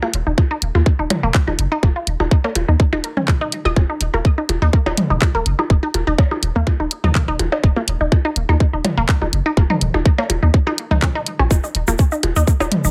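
A steady 4/4 pulse at 124 BPM with a light 53% swing on the sixteenths drives this hypnotic, clinical minimal techno cut, taken from a longer piece in Eb minor and tuned to A4 = 437 Hz. A tight, layered electronic kick sits up front and carries the most weight, joined by a garage drum kit of handclaps and hi-hat, while electronic percussion blips and toms, re-recorded in a large room, echo through delay. Underneath, a deep sine sub bass with a pitch-drop attack punches and sustains between Eb1 and Eb2, pumping against the kick. The riff comes from a squelchy, resonant sawtooth pluck with ring modulation and a noise layer, ranging from Bb3 to Eb5 and colored by phaser, delay and sidechain pumping. A grainy, close and dry tube shaker slips in only at 11.5 seconds. The whole mix has light reverb and a heavily compressed, radio-like sound.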